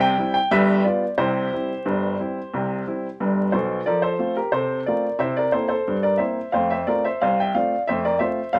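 Ragtime piano in 2/4 at 90 BPM, jaunty and cheerful, with a straight feel that starts in C major and moves to F major at 3.9 seconds. A solo upright piano carries the whole piece, spanning G1 to G5, and it sits up front with an intimate, woody tone, long sustain and audible action noise. A moderate club-sized reverb and a layer of vinyl crackle frame this short cut from a longer piece.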